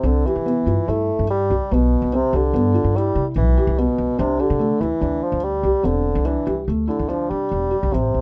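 Contemporary chamber music in an uneven 5/4 meter, this short cut from a longer piece moves at 144 BPM with a playful, restless mood in C major. A mellow bassoon carries the melody up front in a classical style, its tone colored by light vibrato. Alongside it, a felt-muted upright piano plays arpeggios, sounding soft, boxy and intimate, with thick felt and audible action noise. An upright bass supplies the low end with woody pizzicato on steel strings, placed close and present in the mix. All three parts play throughout the 8.2 seconds, as the harmony shifts from Cmaj7 to Gsus2 at 4.2 s. The dry, dark production leaves the small ensemble sounding near and unadorned.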